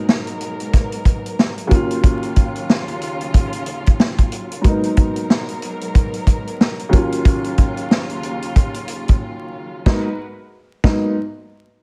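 Dark and moody, this boom-bap hip-hop excerpt rides a swung 92 BPM groove in G# minor, with an up-front vintage drum kit of punchy kick, medium-tuned snare and hi-hat sounding natural and rolled-off in a small room. A woody upright piano with audible action noise and a cassette-tape tint carries the G#m9 and D#m9 changes, while a lush, bowed string section with vibrato sustains chords softly beneath it until 10.2 seconds. Vinyl crackle and studio reverb colour the sound, and a break at 9.2 seconds leads into a brief closing section at 9.9 seconds.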